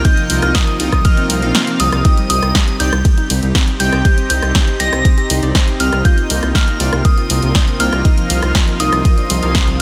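A light reverb wraps this emotional, driving progressive house excerpt at 120 BPM, where a deep, layered electronic kick sits up front beside a punchy deep house kit of hi-hat, ride, rim click and snare, while a dark, rumbling detuned saw bass pumps under the sidechain through chords moving from Bbsus4/C to Cm and back. A glassy, warbling FM bell carries the melody with chorus and tape echo, shadowed by an airy, dreamy lead with phaser, vibrato and dub echo, as an evolving wavetable pad and soft round pluck arpeggios fill the background beneath retro, glossy polysynth stabs. A very quiet electronic swell sounds at 1.2 seconds, the kick drops out briefly at 1.6 seconds, and a calm, drifting glass-harmonics texture enters at 3.8 seconds.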